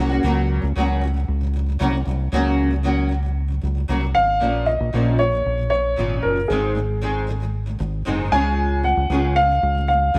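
Pop with a sunny, heartfelt mood, moving at 115 BPM in a straight 4/4, this short excerpt is cut from a longer piece. A double-tracked nylon-string guitar carries the accompaniment from the start, its bright, fingerpicked tone sitting small and up front. Beneath it, a fingered electric bass adds a dark, round, punchy low end that stays direct and close. At 4.1 seconds an upright piano takes the melody, its woody, natural voice ringing with long sustain, shortly before the music shifts into a new section around 4.4 seconds. The harmony moves from Gb to Bbm, then Ab and Db, while a moderate echo chamber reverb and small room ambience give the whole a cozy sense of space.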